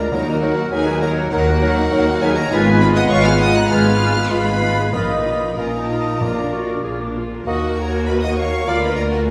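A rich chamber violin section carries the melody high above the orchestra, its expressive vibrato pressing forward with restless urgency in this quick classical-period movement in Eb minor, taken from a longer piece at 98 BPM with uneven, rubato beats. A second violin line, the viola section's bright, intense accompaniment, and the smooth, even cello section sit in the background, with the double basses anchoring the low end. Around them the woodwinds add supporting lines: an airy concert flute, a clear clarinet, a mellow cor anglais with soft attack, and a bassoon in accompaniment. A French horn section holds sustained chords while a tight trumpet section punctuates with stabs, and timpani struck with medium mallets sound from the start and again from 4.9 to 7.1 seconds. The harmony moves from Eb minor through a diminished chord to a suspended and then resolved Bb before returning home, all heard from further back in a reverberant recital hall.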